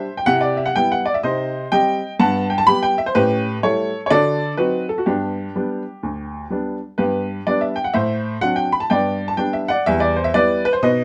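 Exuberant and swinging, this 11-second stride piano excerpt in G major moves at 125 BPM with a 63% eighth-note swing, a solo upright piano, clear, woody and vintage in tone, sitting up front under light reverb and close, detailed microphones as it spans D2 to B5 through a Cmaj7, Cm, G, A7, D7b9 progression before restating its opening idea at 7.0 seconds.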